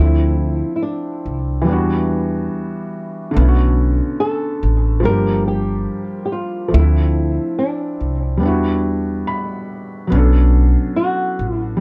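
Lo-fi hip hop at 71 BPM with a 16th-note swing, this melancholic, reflective excerpt from a longer piece drifts through ninth and seventh chords starting on Dm9, tuned slightly sharp to A4 = 441 Hz. A dark, thumb-plucked flamenco guitar carries the melody through a low-pass filter and tape echo, with finger squeaks audible, while a soft, felt-muted upright piano with audible action noise plays mellow, intimate accompaniment and adds a fill from 8.8 to 10.1 seconds. Underneath, a woody pizzicato upright bass with steel strings sits prominently in the mix, and the whole is wrapped in light reverb and a dark, warm production.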